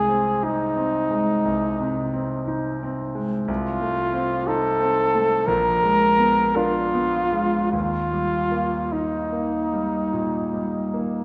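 In a free rubato 4/4 drifting between 49 and 62 BPM, this serene romantic classical excerpt in Eb major pairs a dark trumpet with a clear concert grand piano, both up front, over 11.2 seconds. The trumpet carries the solo melody with light vibrato, a soft attack and a smooth top. The piano accompanies with deep bass and a vintage character through a progression that settles on Eb, all bathed in wet concert hall reverb of 1.9 seconds.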